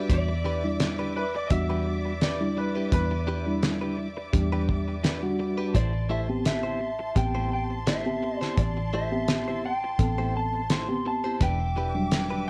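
A straight-eighth soul blues groove at 85 BPM in E minor carries a soulful, brooding mood, with a muffled, cloth-damped drum kit up front, a round, punchy fingered bass, a reedy electric piano shimmering with fast tremolo, veiled con sordino strings holding sustained chords, phased and tape-echoed clean guitar stabs, a slightly broken-up guitar melody from a small old amp entering at 0.1 seconds and returning at 5.8 seconds, and a woody upright piano adding a brilliant second line from 1.2 seconds, all moving from Em7 to Am7 in a moderate studio reverb.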